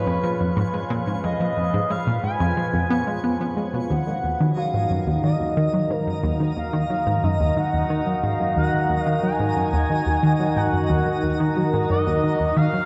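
A tight, driving sawtooth sequence with a detuned filter pluck pulses up front at a straight 90 BPM in 4/4, anchoring this expansive, mysterious piece of ambient space music in Eb minor, while an evolving wavetable pad morphs and warbles through slow-attack chords under a phaser, a smooth, dark synth lead sings an expressive melody with vibrato and subtle chorus and delay, and a faint granular FM texture twinkles with octave-up shimmer, all set in a vast cathedral reverb as the harmony moves from Fdim to Ebm at 3.9 seconds.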